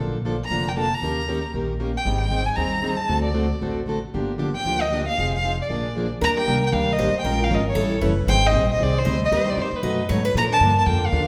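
A fast swing feel drives this fiery excerpt of acoustic string jazz manouche, with two picked, plugged-in steel-string parlour guitars playing the accompaniment from the first moment, one of them sitting very quietly beneath the other. An upright bass with gut strings supplies a woody, thumpy pizzicato foundation, placed up front in the mix. A single bowed violin carries the melody from 0.4 seconds, its tone soft in attack and rich with vibrato and expressive portamento, also close and prominent. At 6.2 seconds, as the harmony moves into a new section, a bright, boxy picked steel-string guitar enters with a second line. The whole band plays live in one room, bathed in a generous large-studio reverb that gives the swinging performance a lush, spacious glow.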